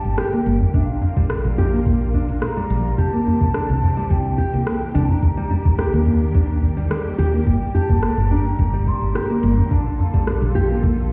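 A soft, tape-warm electronic kick drum pulses at 107 BPM in a straight 4/4 alongside a layered electronic cabasa and rim click and a very quiet, close, dry djembe, with studio reverb on the kick and the cabasa. This is a meditative, mystical slice of organic downtempo cut from a longer piece, moving through Gm, Bb, C7, Ebmaj7 and back to Gm before settling on Bbmaj7. A round, dark fretless electric bass sits up front with analog chorus and sidechain pumping, while a small, fingerpicked nylon-string guitar plays arpeggios through a delay, its finger squeaks audible. A lush, intense string section holds bowed chords with vibrato, pumping against the kick. Above them a distant bamboo bansuri carries the melody with a pure, soft-attacked tone, colored by vintage 12-bit sampler grit and delay until it stops at 10.3 seconds. The whole mix sounds muffled, as if heard through a wall, in a stone-like room.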